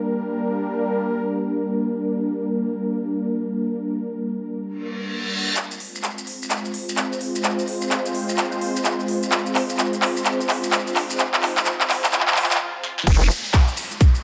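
Bathed in a lush digital hall ambience, this aggressive, bouncy bass house cut opens on an airy, detuned sawtooth pad pumping over sustained chords, joined at 4.9 s by a background reverse cymbal, riser, swell and downlifter. A build-up from 5.6 s then brings a punchy, overdriven snare, crisp hats, handclaps and crash from a big-room dance kit, alongside grainy, distant maracas, before the drop at 13.1 s lands a tight electronic kick and a nasal, saturated vowel-sweep wobble bass.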